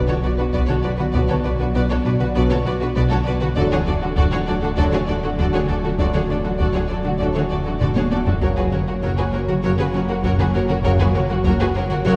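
This cinematic, hybrid orchestral and electronic film score moves at 99 BPM in a straight 4/4 in B minor, with a tense, futuristic mood in this fragment of a longer piece. Lush bowed strings carry it: a soft-attack violin section with vibrato sings the melody over a second, smoother violin line, while violas hold an expressive accompaniment and woody cellos and double basses sit low in the background. A dark French horn section and warm trombones add very quiet sustained chords. An airy, breathy pad with chorus hangs behind them, a twangy, bright resonator pluck spins arpeggios, and a deep, rumbling detuned saw bass with saturation anchors the bottom. Heavy-stick taiko drums in a live room drive the pulse, with a barely audible electronic impact at the start. The harmony moves from Bm to D at 3.6 seconds, and a drum fill at 7.8 seconds leads into F# at 8.4 seconds. The whole piece is bathed in a wet scoring-stage reverb that places the listener further back in the room.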